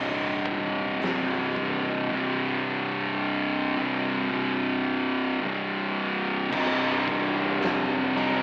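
Stoner and doom metal, sludgy and ominous, crawls at 54 BPM in a straight 4/4 feel in C minor, sitting on a single C minor chord in this short cut from a longer piece. Two thick fuzz guitars drive the riff up front from the first second, one dark and one warmer in tone, both distorted and picked across the range from C2 to C3. Beneath them a growling picked electric bass, bright, direct and amped with overdrive, holds the low end in the background from C1 to F1. An oversized, low-tuned acoustic drum kit enters at 0.5 seconds with crash cymbal, hi-hat, a fat snare and a boomy kick, its big pumping room sounding saturated and gritty behind the guitars. At 6.5 seconds the music moves into a new section as a biting, double-tracked overdriven guitar joins in the background, reaching from C2 up to Eb4. Light reverb and an AM radio sound give the whole recording a murky, lo-fi cast.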